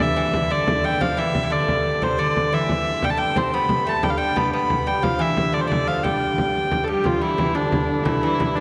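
In a straight 6/8 at 119 BPM, this festive, ancient-sounding medieval dance in G mixolydian is led by a nasal, reedy hurdy-gurdy up front, with a delicate fingerpicked lute on double gut strings playing a second line, a breathing pedal harmonium drone in the background, and a deep, large frame drum played with soft hands. At 6.9 s a very quiet viola da gamba with light vibrato and a ringing, period-style tone joins as another second line. The short passage, cut from a longer piece, sits in a wet cathedral reverb with a 4.7-second decay.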